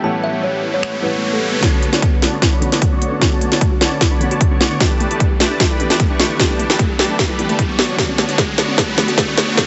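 A woody kalimba melody with vintage sampler grit opens this lush, dreamy half-time future bass passage in B minor at 151 BPM, over a felt-muted upright piano, a very quiet shimmering pad, huge detuned supersaw chords and a riser in the background, with the pumping and tape echo on the kalimba, piano and supersaws. The crisp, tape-warm trap kit of snaps, hats and sharp snare arrives at 0.8 seconds, and at 1.6 seconds the kalimba drops out as a punchy, overdriven kick and a soft, round, warbling pluck playing chorused arpeggios enter, moving from Bm9 through A9sus4. That second stretch is a build-up with a drum fill and filter sweeps on the supersaws and the pluck, set in light reverb with a dark top end.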